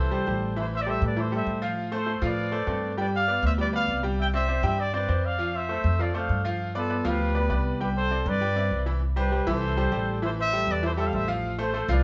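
A mellow trumpet section carries the melody up front, its ensemble sound smooth on top with a light vibrato and a pop-style polish. This short excerpt from a longer salsa piece moves at a brisk 199 BPM in a straight 4/4, with a sunny, danceable mood in C major. A bright grand piano supplies the accompaniment, brilliant and intimate, with audible action noise and long sustain keeping it present in the mix. Underneath, a pizzicato upright bass with steel strings sounds woody and dark, sitting close and prominent. The harmony circles through chords such as Am7, F/A, G, Cadd9, F6 and G7, and the opening progression begins again at 9.0 seconds. All three parts play throughout, captured live together in a large studio with a moderate reverb that rounds off the sound.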